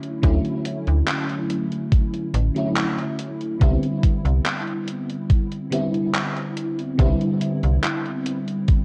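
A woozy, faded vaporwave excerpt at 71 BPM opens on a lush, dreamy FM electric piano with a soft pad layer, chorused and tape-echoed, moving from Dmaj9 to Cmaj7 over a gated, overdriven 80s drum machine of handclaps and hi-hat, while a snappy, metallic slap-like FM bass and a thumpy, overdriven electronic kick sit up front from 0.2 seconds, all heard through a light digital ambience with a cassette-tape cast.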